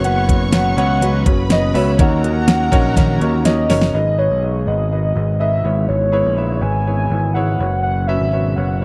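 An overdriven, punchy electric bass sits up front in this driving, dramatic piano-driven pop excerpt in G# minor at 123 BPM, joined by a grand piano with long sustain, a velvety sawtooth synth lead carrying the melody with chorus and vibrato, and a very quiet detuned analog pad holding chords. For the first 3.9 seconds a layered electronic drum kit with a knocking kick, fat snare and metallic hats pushes the track and closes with a fill, while a distant, lush bowed violin section and a very quiet, full-bodied jumbo acoustic guitar riff play only through that opening stretch. The sound is dry and close in a 1970s studio style, with chords moving from F#sus4 through D#m7 to G#m and E6/G#.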